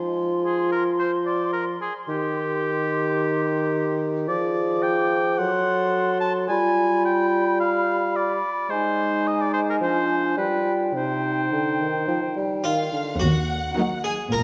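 A playful, whimsical cinematic cue in C minor at 108 BPM opens with a woodwind quartet of mellow, distant clarinet, hollow silver flute, up-front bassoon and clear oboe, the clarinet, flute and oboe carrying second lines over the bassoon's accompaniment through chords like G7b9 and F#dim, before a plucked, Italian-style harpsichord and a rich, vibrato-laden violin section take the mischievous melody at 12.6 seconds, joined by cello and a lush double bass section on an Ebm turn, with violas and a lower violin line briefly filling in, all set in a wet concert hall reverb as the quirky fragment cuts off.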